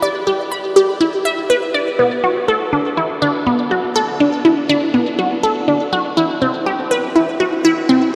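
Ambient excerpt at 122 BPM in B phrygian, mysterious and hypnotic, built around a single resonant blip pluck playing alone from 0.0 to 8.0 s across B3 to B5. The pluck is juicy and squelchy, a bright, detuned sawtooth with a sub octave, a noise layer and a moving notch. It sits up front with a fast attack and short decay, colored by phaser and tape echo. The production is dark and warm, steeped in a huge, wet reverb that lingers for 8.0 s.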